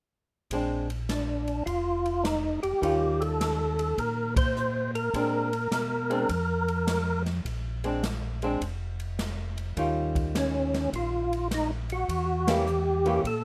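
Swinging and greasy, this soul jazz organ trio cut is carried by a fat, lightly overdriven tonewheel organ melody with key click, third-harmonic percussion, chorus vibrato and a slow rotary speaker that enters at 1.1 seconds, sitting up front over a round, mellow tonewheel organ bass line with its own slow rotary and chorus vibrato. A clean, picked hollow-body archtop guitar adds dark comping while an airy, polished big-band drum kit swings on hi-hat, ride cymbal, medium-tuned snare and punchy kick. The band hits accents together at 4.3 and 12.4 seconds, and light reverb gives the whole a hall-like glow.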